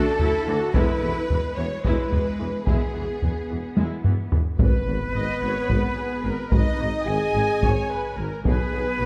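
Close, up-front taiko drums drive this relentless, epic orchestral film-score passage in a brisk 7/8, cut from a longer piece, beneath lush bowed violin sections carrying the melody and a second line, a clear viola section, and mellow French horns holding sustained chords. The tuba, a distant cello section and a double bass section anchor the bass, while the harmony moves from D add9 to E before settling into G# minor at 4.6 s. There a drum fill gives way to a huge, dark impact, and an airy silver flute adds a second line, all set in a moderate scoring-stage reverb.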